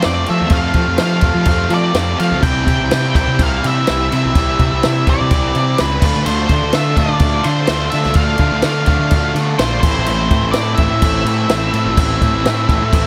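A restless, bittersweet indie rock excerpt at 126 BPM in straight 4/4 opens with a shadowy, fuzzed octave lead guitar melody carrying distortion and slapback echo over a dry cocktail drum kit with a punchy kick, high-tuned snare and dark cymbals, joined at 0.1 s by a round, fuzzy bass sitting up front, while two bright, picked overdriven guitars play riffs in the background (the rawer one with lush chorus and slapback echo) and a gritty, barely audible rotary organ holds chords beneath, the harmony moving through F6, Cmaj7, Dm7 and Am in a light reverb.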